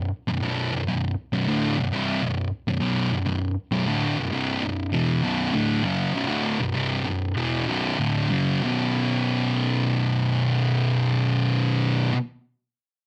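The uneven 4/4 pulse sits around 99 BPM and slows down between 3.7 and 8.6 seconds, giving this ominous, sludgy metal fragment, cut from a longer piece, a dragging, heavy gait. A lone electric guitar carries everything, picked with a thick, distorted fuzz tone. It is double-tracked and up front, and it churns through a low register in B minor. The guitar moves from a B minor chord to a B5 power chord at 8.6 seconds, set in a moderate studio ambience.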